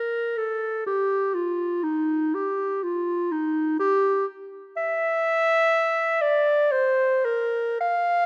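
A mellow, up-front clarinet sounds alone in a moderate concert hall reverb through this brief, mournful, yearning classical passage in G minor, played with free, expressive rubato in 3/4 at 51-63 BPM, ranging from Eb4 to F5 across its 8.3 seconds, with tuning set to A4 = 441 Hz.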